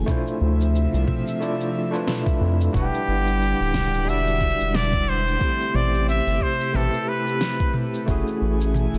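A lazy swung groove from a soft electronic kick and a smooth R&B kit with a fat snare, cabasa and toms sets this sunset chillout fragment in motion, anchored by a deep, round analog bass that sits up front. A barky, overdriven tine electric piano with fast tremolo and delay plays the accompaniment over an airy, chorused pad of sustained minor ninth chords, giving a warm, smooth mood. From 2.8 s to 7.8 s a whispered, nasal trumpet with a straight mute carries the melody with light vibrato and scooped notes, colored by vintage sampler grit and delay, all in a dense, heavily limited modern mix with light reverb.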